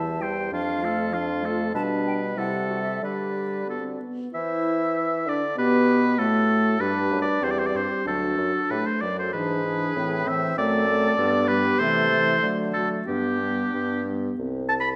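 A clear, up-front oboe carries the second line alongside an airy, mellow silver flute melody with vibrato and rolled-off highs set in the background, while a soft-attack, close-miked French horn and a distant, roomy clarinet fill in the accompaniment and a smooth-topped bassoon with light vibrato holds the bass, all five sounding from the start of this graceful, spirited excerpt of a quick classical-period wind quintet movement in G major, taken at 89-99 BPM in 2/4 with rubato and bathed in a wet recital hall reverb.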